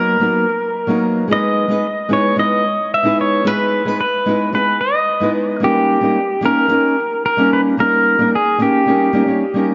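A clean electric pedal steel guitar carries the melody from the first second, played with fingerpicks and slide, its compressed volume swells trailed by delay as it moves between G4 and E5. This short, smooth and wistful chillout fragment, cut from a longer piece, sits at 111 BPM in a straight 4/4, tuned slightly high to A4 = 441 Hz. Beneath it, a small, thumb-plucked nylon-string guitar with fresh strings supplies warm accompaniment from F#3 to C#5, and both instruments sit up front throughout the 9.7 seconds. The harmony rests on Bmaj7, moves to Emaj7 at 1.3 seconds and turns to D#7 at 5.6 seconds. A moderate, lush hall reverb with a long 2.9-second tail surrounds the pair, and the top end rolls off above 7.5 kHz, giving the sound a soft, mellow sheen.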